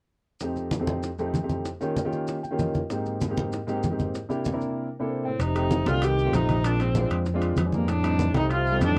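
A biting, bowed viola with vibrato carries the melody from 5.2 seconds in this lively, danceable Afro-Cuban jazz excerpt at 193 BPM in F mixolydian, joined by a breathy, whispered trombone second line in the background and a punchy, amped fingered electric bass up front. From 0.4 seconds a natural, up-front grand piano accompanies through chords such as F7, Abmaj7 and Bb9 with short fills, over low-tuned congas with a compressed, saturated edge, round close bongos and grainy maracas, while ringing metal-shell timbales arrive at 5.4 seconds. Light reverb and the wobble of worn cassette tape with warbly pitch drift color the recording.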